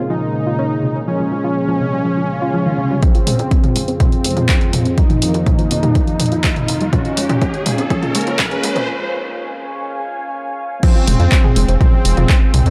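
Melodic techno with a dark, cinematic mood, this short cut from a longer piece opens on a deep, moody ambient pad with chorus and built-in reverb, a soft round pluck playing arpeggios in the background with vintage sampler grit and delay, and brassy analog synth stabs. A smooth, detuned supersaw carries the melody through cassette-tape colour, a low-pass filter and digital delay, while filter sweeps move across the pad and brass. At 3.0 seconds an overdriven, punchy electronic kick drum arrives up front alongside an analog drum machine of crash cymbal, handclaps, hi-hat and toms, both re-recorded in a large room, and a tight, driving sequencer bass pumps beneath them. An electronic swell enters at 2.3 seconds and leads into a riser through the build-up, and a very quiet, evolving analog drone joins at 3.5 seconds to thicken the texture, with the pluck, pad, brass, supersaw and bass all breathing to sidechain pumping. 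A break at 8.9 seconds gives way to a drop at 10.8 seconds, with a brief final brass stab before the end. The production is dark and warm, with light digital ambience.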